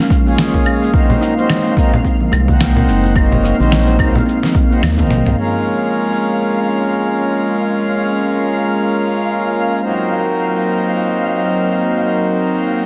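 Organic downtempo with a meditative, hypnotic pull, where a reedy, breathing pedal harmonium accompanies a chorused, detuned analog pad sustaining Bbm7 and Cm7b5 chords beneath a twinkling granular shimmer, while a woody kalimba with tape echo and a filter sweep, a gritty, overdriven sampler-style kit with fat snare, claves, shaker and toms, a punchy electronic kick, soft-handed congas and a deep, round analog bass arriving at 2.3 seconds move over swung sixteenths until a drum fill at 4.8 seconds, after which the harmonium, pad and texture carry on alone from 5.4 seconds in concert-hall reverb.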